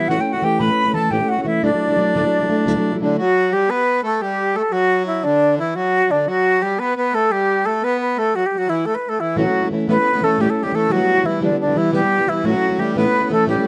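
A cheerful, bright Celtic slip jig in 9/8 opens with a pure concert flute carrying the melody up front, its vibrato and soft attack lending each phrase an expressive glow. Beneath it, a reedy, full accordion plays a second line, close-miked and dry with a dry tuning. A fingerpicked, plugged-in steel-string parlour guitar with fresh strings adds boxy accompaniment over A and Dadd9 before dropping out at 3.2 seconds, leaving flute and accordion to carry the tune through a stretch with chords unstated. The guitar returns at 9.4 seconds, moving through A, Em and back to A. Light reverb and close, detailed microphones frame this passage cut from a longer piece.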